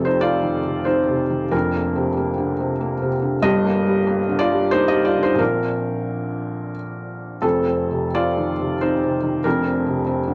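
In a flexible, rubato three-four lilt, this short neoclassical minimalist piano fragment drawn from a longer piece unfolds with an intimate, tender mood. A felt-muted upright piano plays solo throughout its 10.3 seconds, its mellow, hushed tone set up front with the soft clicks of its action clearly audible. A moderate studio reverb gives the natural sound a gentle sense of room.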